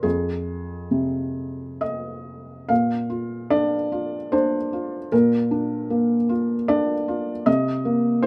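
A lone high F opens this short cut from a longer neoclassical minimalist piano piece, played on a felt-muted upright piano that sounds soft, mellow and up front, with short sustain and light reverb. Moving in a rubato 3/4 at roughly 63-78 BPM and tuned to A4 = 444 Hz, the solo piano spans F2 to F5 and shifts to a Bb harmony at 2.7 seconds before settling on a rootless Abadd9/C at 7.5 seconds. The mood is intimate and melancholic.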